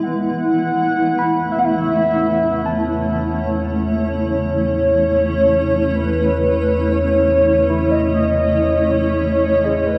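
Ambient piece at a slow 61 BPM with a luminous, serene mood, where a velvety synth lead carries the melody over an up-front, cloudy granular pad of sustained A/E chords whose filter sweeps across the passage, a deep, ominous drone bass rumbling in from 1.5 seconds, and a gritty, overdriven tine electric piano with fast tremolo fading in with background arpeggios from 1.2 seconds, all set in a cathedral-like reverb.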